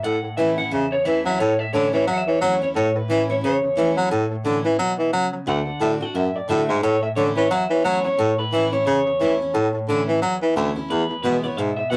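Rockabilly with a rollicking, upbeat mood, this short excerpt cut from a longer piece runs at 177 BPM in 4/4 with a swung eighth-note feel, sitting in A major and tuned slightly below standard pitch. An electric guitar through a small old amp carries the melody, its picked tone bright, twangy and slightly broken-up with a lo-fi edge. Beneath it, a picked steel-string acoustic guitar supplies full-bodied dreadnought accompaniment. A clear baritone saxophone, up front in the mix, takes the bass role with a light vibrato and a pop-style solo character. The chords move from A to D at 5.5 seconds, back to A at 6.8 seconds, and on to E at 10.9 seconds. Light reverb and the rough feel of a rehearsal-room recording give the whole performance a loose, live-in-the-room quality.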